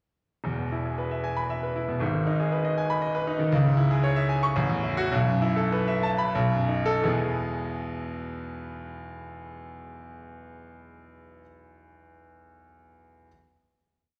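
A classical virtuoso piano study in E major and 3/4, this brief, complete piece has a brilliant, sparkling mood, moving with a free rubato feel between 87 and 120 BPM. A clear concert grand piano plays alone from 0.4 s, its sweeping arpeggios spanning E1 to C#6 with a deep bass and a smooth, vintage character, heard up front in a wet recital hall reverb. The harmony passes through G#m, C#m and F#m7/A to B7sus4 and B7, slowing from 2.8 s before settling on a final E chord at 7.0 s that rings until the piano stops at 13.3 s.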